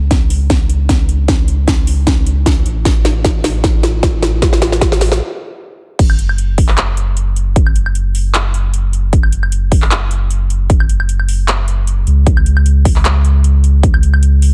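A swung, half-time groove drives this lush, bittersweet future bass clip, opening with a build-up in which a trap drum kit of sharp snare, metallic hi-hats, handclaps, woodblock and crash cymbal rolls through a fill until a brief stop at 5.2 seconds. From the opening moments, a punchy, layered electronic kick sits up front with a deep, thick sub bass, tube-saturated and pumping from sidechain, holding long tones with a fast attack, and at 6.0 seconds the drop lands. The overdriven kit carries the grit of a small room, while the overall sound stays dry and dark at the top.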